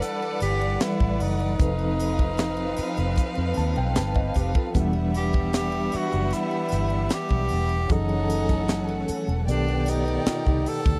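A dry, close 1970s-style studio sound frames this silky, smooth excerpt of lush soul at 76 BPM, where a breathy tenor saxophone with scooped notes carries the melody over a bowed violin section's second line, a reedy electric piano with fast tremolo, sustained string chords in the background, a tight funk drum kit with a high-tuned snare up front, a faint shimmering triangle, a round, punchy muted bass entering at 0.4 seconds, and a dark, clean electric guitar riff surfacing briefly at 4.2 and 9.7 seconds.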